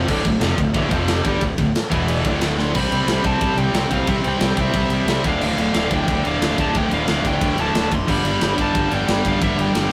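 Dark and relentless, this heavy metal excerpt charges along at 180 BPM in 4/4, with an up-front scooped high-gain guitar riff layered over a very quiet second scooped guitar and a double-tracked overdriven guitar in the background, a growly fuzz-toned fingered bass, and a tight, gritty drum kit with bright cymbals; at 2.6 seconds a drum fill ushers in a dark high-gain lead melody that joins the texture over chords moving from C to Dm to G, all set in a rough rehearsal-room sound with moderate reverb.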